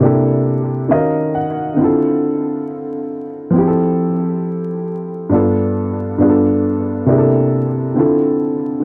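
A dark upright piano plays alone from the first second, its woody, mellow tone softened by cassette tape and a low-pass filter, with tape echo trailing its notes. It opens with a short fill from 0.5 to 1.8 seconds, then moves through lush extended chords in D minor at a slow 68 BPM with a swung, reflective hip hop feel. Sitting up front in a small room under a haze of vinyl crackle, this brief nostalgic passage from a longer piece has a dusky, vintage character.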